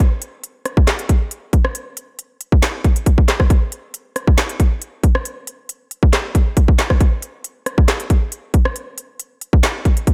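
Hip hop at 137 BPM in a half-time 4/4 feel, this menacing, eerie clip from a longer piece features an electronic trap drum kit placed up front in a dry mix, with a hard-clipped kick, woody snare, crisp hi-hats, handclaps and rim clicks running through all 10.1 seconds.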